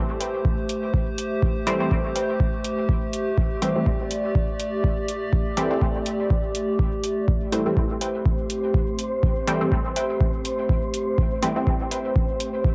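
A swung 4/4 pulse from an up-front, tape-warm deep kick and metallic analog hi-hats drives this hypnotic, deep dub techno excerpt, built over a single Am7 chord. A mellow, warbling pad of detuned square and triangle tones sustains chords at the front, pumping against the kick, while muted sawtooth chord stabs with phaser and dub echo enter at 1.7 seconds and a lo-fi, dusty pluck riff sits in the background. At 8.3 seconds an airy, breathy wind-like texture joins, all of it heard through the light reverb of a home cassette recording.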